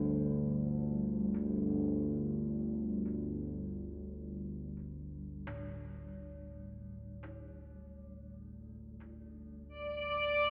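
Heard through a narrow, telephone-like filter in a small room, this ominous, cavernous ambient fragment in free time sets a dark, rumbling drone up front with reverb and subtle chorus beneath a ringing, metallic bronze singing bowl whose mellow tape-echoed arpeggios fade out in the background over the first 9.7 seconds, before a faint, crystalline glass pad enters at 9.8 seconds as the excerpt is cut off.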